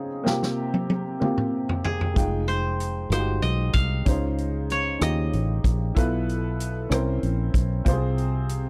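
Solemn and soulful, this slow gospel excerpt in 6/8 at 63 BPM in F minor opens on a worn, slightly detuned upright piano at 0.0 s, joined by a swinging big-band drum kit whose fill runs from 0.3 to 2.2 s with a punchy kick and medium-tuned snare, a woody koto played with fingerpicks carrying the melody from 1.8 to 6.6 s, and a foam-muted fingered electric bass entering at 2.2 s, all in a dry, close 1970s-style studio sound over chords moving from C7sus4 through Fm9 and Dbmaj9 to a closing Fm/C.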